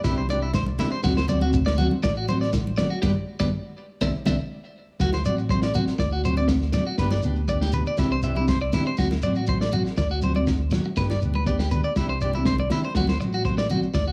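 A straight 4/4 groove carries this danceable, warm highlife guitar band excerpt, with a vintage drum kit of punchy kick and medium-tuned snare sounding muffled and lo-fi in a small room. A dark, round fingered electric bass holds the low end, while a grainy, mellow shekere and damped, thick-skinned congas sit in the background of the percussion. On top, a bright, slightly broken-up electric guitar picks compressed arpeggios through tremolo and tape echo, and a full-bodied nylon-string guitar fingerpicks accompaniment with audible finger squeak. The harmony cycles through Cadd9, D7 and G. The band hits an accent from 3.0 to 5.0 seconds before moving into a new section at 5.0 seconds. Light reverb and a small-room ambience give the whole a cozy, intimate feel.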